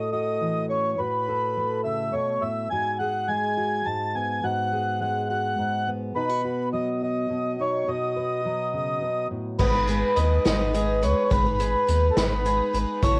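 This home recording on cassette has a light reverb and a tape character, capturing a bittersweet, wistful indie folk excerpt in a lilting 6/8 that builds as it goes. A mellow, reedy accordion carries the melody up front throughout, its full tone colored by cassette tape, while a fingerpicked steel-string acoustic guitar with a full-bodied jumbo sound accompanies it until 9.6 seconds. At that point the arrangement fills out: a bright, boxy twelve-string acoustic guitar takes over the accompaniment with a shimmering octave-doubled ring, and a bowl-back mandolin adds picked arpeggios bathed in plate reverb. A pure sine sub bass enters at the same moment, deep, clean and smooth, sitting up front beneath everything. An unplugged drum kit, played with bundle sticks and heard distant in a roomy studio space, brings a punchy kick, a medium-tuned snare, hi-hat and dark crash cymbals, with its own cassette tape coloring.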